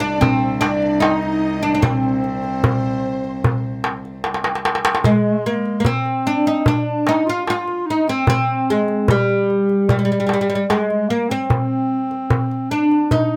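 The oud leads this hypnotic, soulful Turkish makam ensemble excerpt, its fretless, double-strung tone plucked with a plectrum and set up front with a woody character, moving between G3 and F4 in C makam nihavent. A dark, present clarinet in classical style carries a second line across the same range throughout, while a crisp, metal-shelled darbuka played with hard hands sits forward in the mix with a compressed, saturated edge. The piece moves at 74 BPM in a straight 4/4, tuned to A4 = 444 Hz. At the opening, a soft-attacked violin section bowing with vibrato adds a high second line until 4.2 seconds, and a distant, reedy cello holds a gut-string drone on C2 until 5.1 seconds. A drum fill from 4.2 seconds ushers in a new section at 5.0 seconds, where the oud, clarinet and darbuka carry on together. The close, detailed recording has little reverb, giving the performance an intimate, dry presence.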